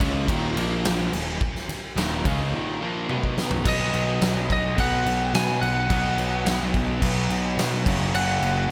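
The huge arena drum kit leads this aggressive, driving hard rock excerpt at 107 BPM in straight 4/4, its fat snare and punchy kick sitting up front in a natural big-room sound, with crash, ride and toms and a fill from 3.1 to 3.7 seconds. Beneath it, a fuzz picked electric bass adds an overdriven, punchy low end, while two overdriven guitars hold the riff further back: a bright cranked stack guitar with slapback echo and a dark, hollow-bodied semi-hollow guitar. At 3.7 seconds, as the second section begins, a lightly driven lead guitar enters with a twangy, compressed, slightly broken-up melody in a high register, carrying its own slapback echo. The harmony moves from Eb5 through Bb5 and B5 to Gb5 at 7.9 seconds. A moderate, lush hall reverb gives the whole mix a big arena feel before it cuts off at 8.7 seconds.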